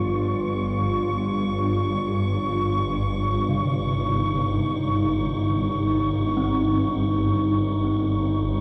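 Cavernous and desolate, this dark ambient drone excerpt sets a deep, moody analog pad with chorus and a ring-modulated edge over a swarming, detuned granular drone that carries a filter sweep, while an airy, wind-like breath of tuned noise hangs high above, and from 3.5 seconds a bronze gamelan-type metallophone adds arpeggios with shimmering beats and delay from the background, all set in a wet cathedral reverb.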